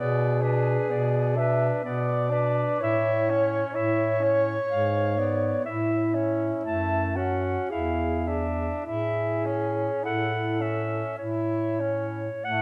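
Tender and lyrical, this brief classical passage for single-reed quartet, cut from a longer piece, moves in an unhurried three with a rubato feel through a harmony that leans on diminished and dominant colors before settling home. A clear clarinet carries the melody over a mellow alto saxophone second line with light vibrato, which drops out at 11.2 seconds, while a distant, roomy tenor saxophone supplies soft-edged accompaniment and an up-front bass clarinet anchors the bottom with a smooth top. A moderate concert hall reverb gives the ensemble a natural sense of space.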